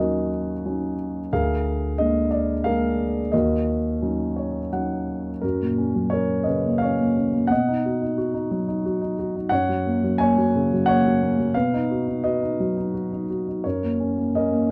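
A dark, mellow grand piano plays alone from the start, brooding in Eb minor at 88 BPM in 3/4 with a rubato feel, its intimate, up-front, smooth and vintage sound carrying audible action noise. A piano fill at 4.0 s leads into a bittersweet turn to F# major at 5.4 s, where the harmony moves between F# and B chords until the excerpt ends at 14.7 s. Light reverb and a dark, warm production frame this lyrical classical solo, tuned to A4 = 441 Hz.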